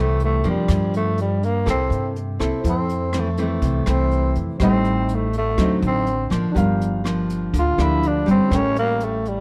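A straight, easy bossa nova groove in 4/4 sets a sunny, breezy mood in this short cut from a longer piece. The upright bass anchors the low end with a woody, thumpy pizzicato tone. A jazz brush drum kit joins at 0.2 seconds, its brushes, hi-hat, rim click and punchy kick sounding as if played in a small room. Up front, a full-bodied nylon-string guitar is fingerpicked in a deep classical style through changes such as Fmaj7, Gm7 and C6, later moving through Am7b5, D7b9 and A7b9. At 2.6 seconds the growling tenor saxophone moves into a solo, breathy and raspy with a subtone, scooped notes, vibrato and a smooth top. A natural-sounding baby grand piano with short sustain enters in the background at the same moment. Light reverb and a dark, warm production give the whole a relaxed, intimate glow.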